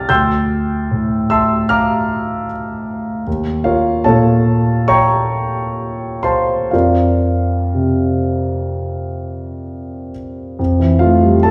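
Impressionist classical solo piano, this brief passage of about 11.5 seconds is cut from a longer piece and carries a luminous, hazy mood with a freely breathing rubato feel in four. A single grand piano, intimate and natural in tone, spans from D2 up to A6, its long sustain letting each harmony linger and blur into the next. The mechanical noise of the instrument's action is audible, lending the playing a close, tactile presence even as the piano sits up front. Around it, a recital hall reverb with a 1.3-second decay wraps the sound in a wet glow, and the room is heard from further back. The harmony drifts from Dm9 through Eb9 to an open F5 before settling on Fmaj7 at 10.6 seconds, giving the passage a shimmering color.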